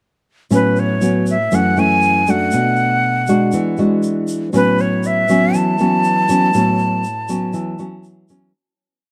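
At 0.5 s a sophisticated, relaxed bossa nova at 120 BPM in A major begins. A fingerpicked nylon-string guitar, dark-toned and up front, plays thumb bass under syncopated plucked chords moving from A69 through F#m7, Bm7 and E9 back to A69. Alongside it, a breathy, close-miked jazz flute with a crisp chiff sings motif-based song phrases, while a grainy, band-limited tube shaker sits low in the mix. Light reverb and a warm, dusky production round out the short piece before it fades out from 6.5 s to 8.5 s.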